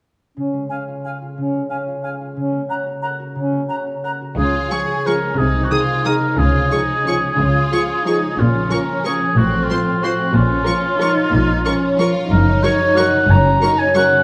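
Classical orchestral ballroom waltz in Db major at 181 BPM, festive and sweeping, with a rubato lilt: a ringing harp spins arpeggios beneath a mellow, up-front oboe, a distant clarinet and an airy flute group, until at 4.4 seconds lush bowed strings arrive with a second violin line, a rich cello section and woody double basses, joined at 4.7 seconds by high violins carrying the melody and expressive violas sliding with portamento, all bathed in a wet recital-hall reverb in this cut from a longer piece.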